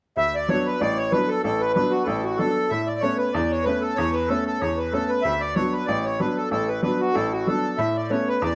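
Celtic folk in a rollicking, cheerful mood with a gentle swing in four, this passage cut from a longer piece runs from 0.2 to 8.6 seconds. A reedy accordion carries the melody up front, its slow-beating tone set in plate reverb, while a bright, woody upright piano with short sustain plays the accompaniment just as close, moving between D6 and Aadd9 chords. The music sits in a wet studio room with a dark, warm production.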